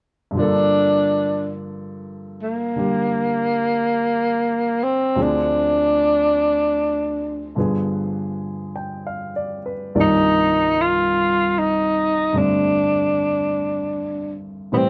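A breathy, whispered tenor saxophone carries the melody with subtone, vibrato and scooped notes over the natural, short-sustained accompaniment of a baby grand piano in this smoky, melancholic jazz ballad excerpt in G minor, swinging slowly at 50 BPM through Gm9, Dm7b5, G7b9 and Cm11, both instruments up front in a close, detailed sound with light reverb.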